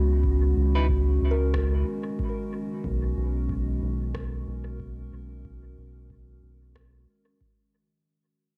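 Ambient dub at 92 BPM with a swung sixteenth feel, deep and hazy as it fades throughout this cassette home-recorded fragment, where a warbling, nostalgic pad holds dark, detuned chords moving from C#7sus2 to B6, a soft FM synth bell plays gentle, chorused arpeggios with tape echo until 4.1 s, a round, up-front analog bass sustains underneath, a deep, tape-warm electronic kick sits in the background with an overdriven rim click, and a twangy clean electric guitar stab flickers through dub echo at 0.8 s.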